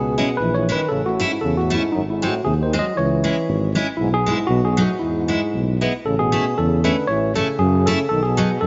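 A bright tine electric piano carries the melody up front, its worn, slightly out-of-tune tone clean and direct, with a delay trailing its notes through this short, jolly alpine folk dance clip in E major. Beneath it, a mellow euphonium with light vibrato and a soft attack plays a smooth second line, also touched by delay, while a dark tuba in classical style anchors the bass. A picked steel-string acoustic guitar with a full-bodied dreadnought sound and subtle chorus joins at 0.2 seconds, sitting close in the mix as accompaniment. The bouncy 2/4 groove moves at 117 BPM with a light swing, passing through C#m7, A, G# and C#m before resolving to E and shifting into a new section at 6.1 seconds over A and B. A moderate plate reverb soaks the whole band in a dreamy haze, with the top end rolled off to keep the sound soft and hazy.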